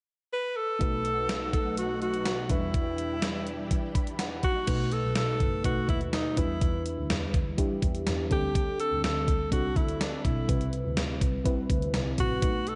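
A bright, up-front alto saxophone carries a moody, urgent melody over a thumpy gated 80s drum machine at 124 BPM in this 1980s-style pop excerpt, joined by a mellow FM electric piano with a fill from 3.7 to 4.7 s, shimmering string-machine violins until 4.7 s, and a woody bowed double bass from 4.7 s, all set in a lush, dark hall reverb.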